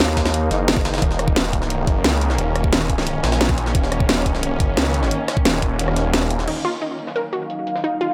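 Lightly reverberant and gritty, this tense, mechanical excerpt of dark technical drum and bass at 176 BPM in Eb minor opens on a swarming, granular drone pumping under a knocking electronic kick, a cracking up-front drum and bass kit and a filtered, pitched-up jungle sampler-style kit in the background, while a thick FM bass growls until a snarling distorted saw bass takes over at 1.0 seconds; the kick drops out before a lush, punchy unison pluck arpeggio with tape character and dub echo arrives at 6.5 seconds over a filter sweep on the drone, joined at 7.2 seconds by a bright, ethereal pad shimmering with chorus and phaser.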